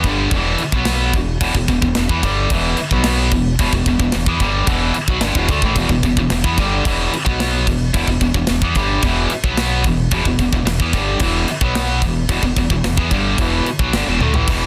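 A straight 4/4 pulse at 110 BPM drives this dark, aggressive heavy metal excerpt in E minor, built on a single E minor chord, with a tight metal drum kit of crash cymbal, kick, snare and toms placed up front, its polished sound, bright cymbals and tight kick sitting in a big, airy room sound and capped by a drum fill at 14.2 seconds. A bright, double-tracked distorted guitar, picked and also up front, plays the riff from E2 to B3, while a growling fingered electric bass, overdriven and direct and amped, holds the low end from E1 to E2. Small room reverb surrounds the parts, and the short cut, taken from a longer piece, carries a dense, heavily limited modern master.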